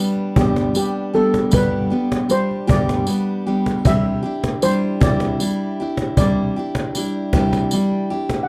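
A mellow, shimmering steel pan carries the melody over a bright, full-bodied picked steel-string acoustic guitar from the start, joined by a snappy, up-front cajon at 0.2 seconds and a jingly tambourine sitting lower in the mix at 0.7 seconds, in this pastoral, hopeful acoustic folk excerpt at a slow 52 BPM in 6/8 that moves from G to Cadd9 within a dry, close 1970s-style studio sound.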